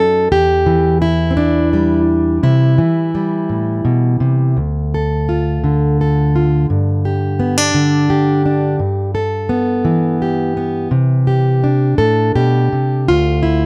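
The sound is dry and close, like a 1970s studio recording, with a light touch of reverb. This haunting, reflective folk passage, cut from a longer piece, features a single plugged-in steel-string acoustic guitar, fingerpicked and placed up front. The jumbo-bodied instrument has a dark, full-bodied tone, and a finger squeak can be heard along the strings. The playing is unhurried and rubato, moving in 6/8 at roughly 56 BPM, counted in dotted quarters, and it ranges from D2 up to A4. The harmony opens on Em and C, then shifts at 4.6 seconds through Dm, G5, Em/G and Csus2 before the chords fall away at 13.1 seconds, with the guitar continuing until 13.7 seconds.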